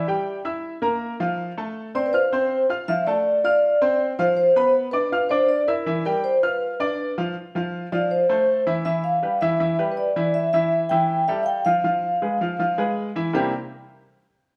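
A large studio's wet reverb, with a 1.2-second decay, surrounds this live-in-one-room jazz recording, a short section cut from a longer piece. It moves at a sunny, danceable 161 BPM in 4/4 with a straight feel, tuned to A4 = 442 Hz. A vibraphone struck with soft mallets carries the melody between Bb4 and G5; its tone is metallic yet mellow and full, ringing with a medium motor vibrato and captured close and dry. A clear baby grand piano plays the accompaniment from C3 to F6, sounding natural and up front with a short sustain, and both instruments play from the start until 13.5 seconds. The harmony opens on Edim and passes through Dm7, Dm13/F, Edim again and Bdim, then arrives at Fmaj7 at 7.4 seconds, moving through Em7, A5 and Fdim before landing on C7 at 13.3 seconds.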